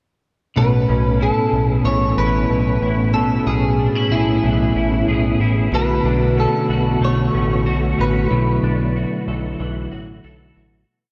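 From 0.6 seconds this short, hazy, ethereal dream pop piece opens with a picked, slightly broken-up electric guitar singing motif-based song phrases through analog chorus and tape echo, over a twangy fingerpicked roll on a second guitar, soft flute-like tonewheel organ chords with key click and chorus vibrato, and a fat, detuned sawtooth bass playing a steady eighth-note line with slides, while a very quiet, inharmonic FM chime scatters ringing notes at 5.7 seconds before the whole reverb-soaked mix fades out from 8.3 seconds.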